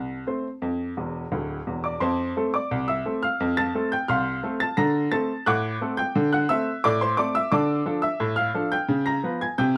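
A dry, close 1970s-style studio sound with light reverb frames this jaunty, playful ragtime excerpt in F major at 87 BPM in a straight 2/4, where a bright, woody upright piano with short sustain sits up front as the only instrument, spanning D1 to Bb6, slipping in a fill at 1.0 seconds and moving through F, D7, Dm and Db7 before the cut at 9.8 seconds.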